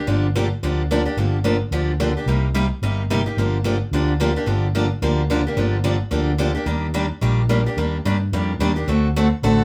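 A bright, boxy steel-string acoustic guitar sits up front from the first instant, picking fresh-sounding accompaniment chords through Gm7, Cm7, Ebmaj7 and D7 in G minor, joined at 0.1 s by a dark, round, punchy fretless electric bass, giving this fiery, virtuosic excerpt of acoustic string swing at 218 BPM a lively band-in-one-room feel with a wet studio ambience.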